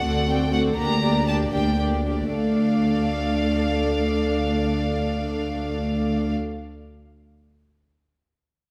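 In a straight 6/8, this short excerpt from a quick, urgent and dramatic classical-period movement for string orchestra slows over its first 2.3 seconds as a violin section carries a smooth-topped melody with light vibrato over a second violin line and an intimate viola accompaniment, all bowed sul tasto with soft attacks, while a dark, woody cello section sits in the background beside a warm double bass section on a low D, the harmony moving from D7 through Gm/D to Dm in the moderate reverb of a scoring stage.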